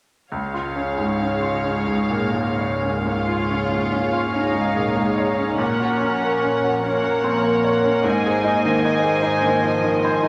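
A slow, rubato 12/8 pulse of 41-52 BPM, counted in dotted quarters, carries this passionate, lush romantic movement for piano and orchestra in Db major, cut from a longer piece and moving from Db through Gb/Bb to Ab by 8.0 seconds. A bright, brilliant grand piano sits up front with long sustain and audible action noise, sharing the melody with a floating, sul tasto violin section above it. Beneath them, a second, distant violin line, woody vibrato violas, pure, soft-attack cellos and a dark double bass section sit in the background of a wet recital hall.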